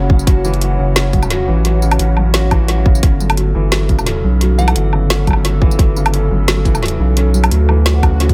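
A dry, echo-heavy mix carries this dark, spacious half-time drum and bass excerpt, where a saturated, thick sub bass and tight electronic kick sit up front beneath a woody-snared kit with bright hats, tambourine and woodblock, a felt-muted upright piano's mellow delayed arpeggios, and a detuned, gritty analog pad pumping on sustained chords from F#m7 to Gadd9, while a soft FM bell flickers briefly at 4.6 seconds and an electronic swell rises at 8.0 seconds.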